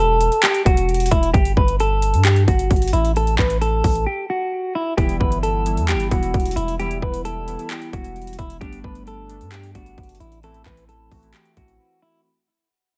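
A clean, twangy electric guitar melody and a deep, mellow 808-style bass open this melancholic, brooding half-time trap fragment at 132 BPM, joined at 0.2 seconds by an overdriven drum kit of hard-clipped kick, metallic hi-hats and handclaps, while quiet, warbling lo-fi synth keys with chorus and phaser slip in at 5.0 seconds as the chords move from Gsus2 through Em and Gadd9 to Am, set in light reverb and fading gradually throughout.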